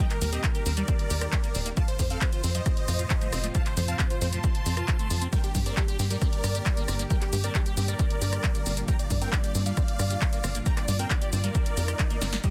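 Uplifting trance at 135 BPM in G minor, soaring and euphoric, where huge detuned supersaw chords carry the melody with sidechain pumping and dub echo over a very quiet, catchy plucky unison lead, lush bowed strings and a squelchy, resonant acid bass with phaser in the background, a tight, dark sequencer bass and an up-front layered electronic kick, a tape-warm analog drum machine of claps, hats, rim clicks, shaker and snare, and a drum fill at 12.2 seconds as a faint swell enters at the close of this dense, heavily limited, dry mix moving from Eb through F to Gm.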